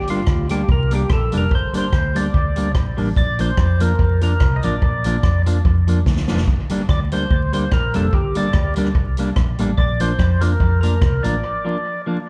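A percussive tonewheel organ carries the melody from the start, fat and lightly overdriven with key click and a slowly turning rotary speaker, its notes trailing dub and slapback echoes. Underneath, a vintage muted electric bass sits dark and round, playing fingered lines with an amped, foam-muted thud, while a clean electric guitar adds twangy accompaniment touched by subtle chorus and its own slapback echo. A swinging big-band drum kit drives this mischievous, energetic ska groove with a punchy kick, a medium-tuned snare, rim clicks and hi-hat, sitting up front in a natural studio-room sound. The kit plays a short fill at 6.1 seconds as the chords move between G minor and B-flat, and at 11.4 seconds the bass and drums drop out for a break that leaves organ and guitar ringing on. The whole performance comes across as a live gig heard through the venue's PA, with club reverb and vinyl crackle, and it is cut from a longer piece.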